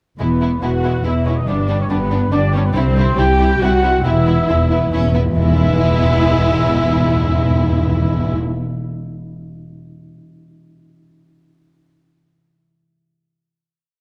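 In a straight 3/4 at 140 BPM, this short, triumphant film-score cue in E major moves from a soaring theme into a final chord at 5.4 seconds, its harmony passing from E through G and C back to E. Lush bowed violins carry the melody over a viola section doubling the tune at the octave, a second, richer violin section answering at phrase ends with sustained chords, and a very quiet, distant cor anglais alongside a dark, tight trumpet section doubling the tune in unison. Underneath, the harp's ringing, rocking broken chords, the cellos' sustained bass on the beats and the woody double basses anchor the sound, while round soft-mallet timpani enter at 4.0 seconds with a fill that rolls into the close.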